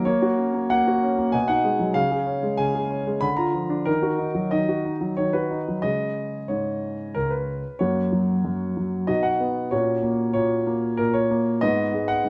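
A warm concert grand piano carries this classical-period sonatina alone, its deep bass and natural tone sitting up front through close, detailed microphones, with a moderate recital hall reverb lending space around it. In F# major and a straight 3/4 at 94 BPM, the 12.3-second fragment of a longer piece feels elegant yet restless, moving through shifting inverted harmonies before turning to a new section at 7.8 seconds.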